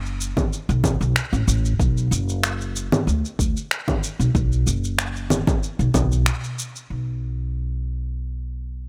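Earthy and warm, this short cut from a longer organic downtempo piece moves at 94 BPM in a straight 4/4, centred on B minor pentatonic. An up-front upright bass carries the low end throughout, its pizzicato steel strings giving a woody, thumpy tone, with sidechain pumping shaping its sustain. A layered electronic kit of shaker, congas and finger snaps sits close in the mix, low-pass filtered to a softened, muffled edge and re-recorded in a small room. A deep, layered electronic kick drum joins at 0.4 seconds, and a break arrives at 6.3 seconds. From 6.9 seconds the bass carries on alone to the end, in a dry, close sound with little reverb.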